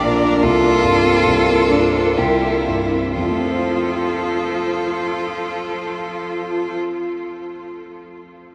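Drenched in a huge, wet reverb, this short cut from a slow romantic movement for piano quartet sounds as if played in a vast, echoing hall, moving tenderly in 3/4 at 59-78 BPM in F major with free rubato and a slowing through the opening 3.2 s. A distant solo violin with rich vibrato carries a smooth melody, while an up-front, even-toned cello sings a second line and a focused viola shares the accompaniment, the harmony settling from C7sus4 onto F at 3.2 s. The bowed strings stop at 6.8 s, leaving the warm, close grand piano to sound alone until 8.5 s.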